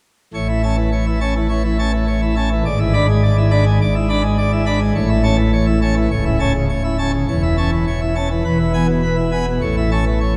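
A straight 4/4 pulse at 103 BPM drives this brilliant, jubilant classical organ toccata in A major, where a solo pipe organ on full plenum with bright mixtures, baroque voicing and chiff sits up front from 0.3 to 10.4 seconds, spanning C#1 to B5 over harmonies moving from A through E7/G#, A/C# and A/E to E and back to A, all bathed in a wet church reverb with a 2.8-second decay within a dark, warm production in this short excerpt cut from a longer piece.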